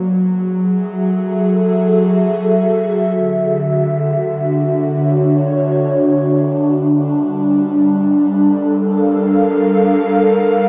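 Ambient music in free time and D lydian, this short excerpt of a longer piece has a luminous, warm mood. A single airy, breathy pad carries the whole recording alone, sitting up front and spanning D3 to F5 with slow attacks, long sustains and an extended release. Its soft, mellow tone blends detuned sawtooth and triangle layers with a noise layer and a moving notch, thickened by chorus and echoed by delay. The harmony drifts from F#m7 to Dmaj7 at 3.2 seconds, then shifts to Gm7 at 7.0 seconds. A wet concert-hall reverb surrounds the sound, while a worn, warbling cassette-tape character adds a warbly pitch drift throughout.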